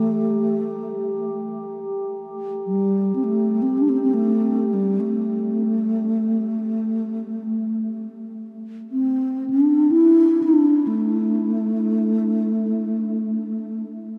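Spacious and meditative, this world-music fragment drifts in free time, cut from a longer piece. A breathy, mellow bass flute carries the melody up front, its hollow, rolled-off tone shaped by vibrato and tongued notes and trailed by a diffuse ambient delay, while a glass harmonica adds a pure, ethereal texture with slow attacks and gentle beating until 4.7 seconds. A huge, wet reverb places both in a vast, echoing space, and the flute sounds on until 13.8 seconds.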